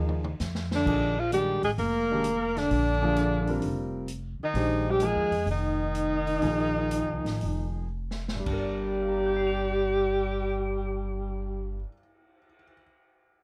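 An alto saxophone with subtone and vibrato carries the melody up front in this spiritual, intense modal jazz excerpt, its vintage jazz tone leading a swinging 4/4 feel. Beneath it, a breathy tenor saxophone adds a second line with soft attacks and scooped notes, sitting a little lower in the mix. A concert grand piano accompanies with an intimate, natural sound, deep bass, long sustain and audible action noise, and it rings on briefly after the horns stop at 11.8 seconds. The pizzicato upright bass is woody and up front with steel strings, while a big-band drum kit in a natural studio room brings a punchy kick, a medium-tuned snare, hi-hat, toms, crash and cymbal swells, with fills that open the passage and lead into the change at 8.5 seconds. Harmony rests on suspended Bb chords before moving to G minor, the music slowing down in the stretch before that shift, all set in light reverb.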